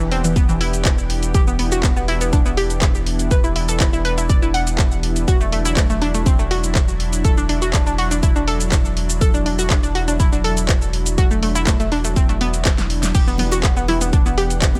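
A steady, straight groove drives this bittersweet progressive house excerpt, with a punchy, layered electronic kick arriving at 0.4 s and a produced pop kit adding a fat snare, handclaps, cabasa, crash cymbal and warm hi-hats. Beneath it, a deep, thick sub bass with a saturated edge and fast attack holds a single low note, breathing with sidechain pumping. A round, bright analog pluck spins arpeggios through chorus and delay, its sawtooth, square and noise layers colored by ring modulation and a filter sweep. A lush, detuned unison pad with a slow attack and long release sustains the chords, moving from Em7 to Dadd9/E and back, also breathing with sidechain pumping. After a drum fill at 12.7 s, congas and bongos slip in at 13.4 s with a small-room acoustic tone in the background, all set in a digital ambience.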